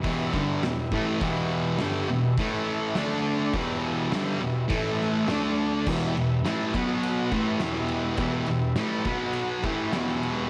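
A double-tracked, fuzz-drenched electric guitar riff sits up front in this swaggering, menacing garage rock passage at 103 BPM in E minor, cycling through Em, A5, D5 and B5, while a vintage overdriven combo organ holds mellow, heavily vibrato-laden chords in the background and an oversized, low-tuned drum kit with a fat snare and punchy kick pounds along in gritty fashion behind them, all set in a light small-room reverb in this fragment cut from a longer piece.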